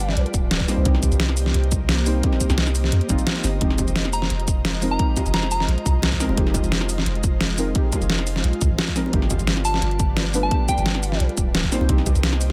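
A lightly swung 16th-note groove at 174 BPM in 4/4 drives this melancholic, lush liquid drum and bass passage in F minor, cut from a longer piece. A punchy, tape-warmed electronic kick enters at 0.3 seconds and drops out briefly around 3.3 seconds. Meanwhile, an overdriven pop kit of hi-hat, shaker and deep snare sits up front with a small-room character, and round, low-tuned bongos join in the background at 3.8 seconds. Beneath them a long, mellow sine 808-style bass holds the low end, while a dark, detuned chord stab with chorus and delay moves through G7, Cm7 and Fm7, joined by an ethereal, airy pad of detuned unison saws with ensemble chorus, built-in reverb and sidechain pumping. A soft, pure FM bell with a vintage warble, chorus and delay places brief melodic phrases high above, all set within a digital ambience.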